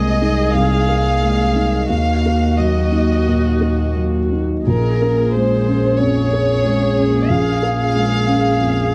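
Reflective and melancholic, this excerpt from a neoclassical piece for piano and strings in Bb minor moves at 91 BPM with a rubato feel, its chords passing from Abadd9/C to Ebm at 1.9 seconds and settling on Bbm7 at 4.7 seconds. A chamber violin section carries the melody up front with vibrato and soft sul tasto bowing, while a dark single viola with an airy bow, a felt-muted upright piano whose boxy tone carries audible action noise, and a bowed double bass with a pure, floating low end fill out the accompaniment. Behind them a hollow, flute-like pad sustains chords through a chorus effect, and the whole mix sits in light reverb with the worn, warbling pitch drift of old cassette tape.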